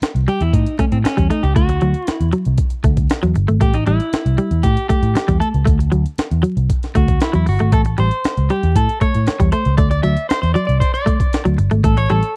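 Funk at 117 BPM in 4/4 with a playful, strutting mood, this short cut from a longer piece moves between A7, Dadd9 and D9 chords. A gritty, compressed breakbeat-style kit with a thumpy kick and high-tuned snare sits up front beside a dark, round, foam-muted picked bass. A compressed hollow-body semi-hollow guitar plays the riff, while a clean picked electric guitar touched with spring reverb carries a solo line from 0.3 seconds, all in a dry, close 1970s-style sound layered with vinyl crackle.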